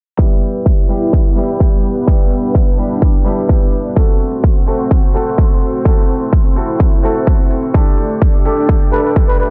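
A dark, low-pass-filtered production with light studio reverb and a filter sweep running throughout frames this anthemic, powerful festival progressive house section at 127 BPM in E minor, where a punchy, overdriven kick sits up front over barely audible crisp hi-hats, a clear grand piano with dub echo and a lush, detuned sawtooth unison pad with chorus and phaser both pump to the sidechain through Em, F#dim and Dsus4, and a veiled, breathy bucket-muted trumpet with jazz-style vibrato enters at 8.9 s.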